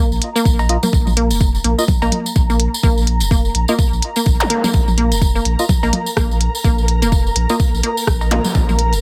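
Minimal techno at 126 BPM in 4/4 with a 16th-note swing, this excerpt from a longer piece feels clinical and sparse, resting on a single Bb5 chord. A squelchy, resonant blip pluck carries the riff with chorus, tape echo and sidechain pumping, while an ethereal, airy pad sits high behind it with ensemble chorus and its own reverb, also pumping. A saturated, thick sub bass moves between F1 and Bb1 under a deep electronic kick that enters at 0.5 seconds, joined by clicky hi-hats and rim clicks from a minimal drum kit, a jingly close tambourine, and tape-echoed electronic cowbell and toms. A hollow, organ-like stab with analog chorus and tape echo spans Bb3 to Eb5 under a filter sweep that runs throughout, and brief electronic zaps punctuate the groove at 4.4 and 8.3 seconds. From 5.7 seconds a flickering, grainy texture drifts in the background, all of it set in a light reverb.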